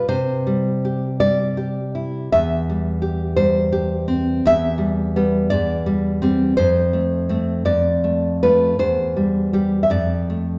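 A lone nylon-string guitar, fingerpicked and full-bodied, opens this wistful, intimate romantic piece in C major, sitting up front as it moves freely in a slow, rubato 6/8 at about 55 BPM with uneven beats. Its deep classical tone spans E2 to E5 over harmonies that drift from C through Em and F to Dm/F, surrounded by a wet recital-hall reverb from a church or concert hall. This 10.6-second fragment, cut from a longer work, stays entirely with the solo guitar.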